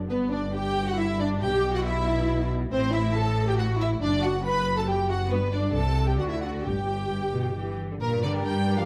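In a brisk, straight triple metre, this graceful and cheerful classical-period movement for string orchestra opens with smooth, even cellos and rich, distant double basses bowing the bass line, joined at 0.1 s by a clear, focused violin melody, a close second violin line and lush viola accompaniment, each singing with vibrato. The harmony moves through gentle sixth and seventh chords to a cadence on G before turning to G minor at 8.0 s. A dark, warm studio sound with a moderate large-room reverb surrounds the ensemble in this excerpt.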